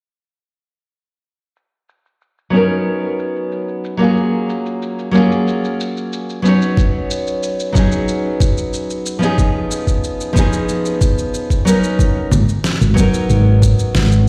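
Heard as if over a big sound system in a bare stone room with a moderate plate reverb, this wistful, smooth sunset chillout excerpt at 92 BPM in G# dorian opens at 1.6 seconds with a filter-swept, low-passed electronic shaker, congas and deep snare drum, joined by an up-front, full-bodied nylon-string guitar, fingerpicked with fresh strings, finger squeak and tape echo over G#m11, B69 and C#7 chords, then a knocking electronic kick drum at 6.8 seconds, and finally at 12.3 seconds a dark, round, woody fretless electric bass with tube saturation and subtle chorus.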